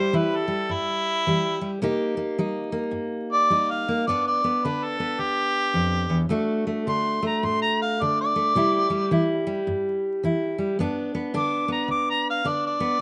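A mellow, vintage-toned harmonica with light vibrato and a slapback echo takes a jazz-styled solo from the first second, up front over a full-bodied fingerpicked jumbo steel-string acoustic guitar in this laid-back, gritty acoustic country blues piece cut from a longer performance, swinging at 107 BPM in 4/4 through a C, Cm7, G, D, C, G progression, with vinyl crackle and a dry, open-air sound.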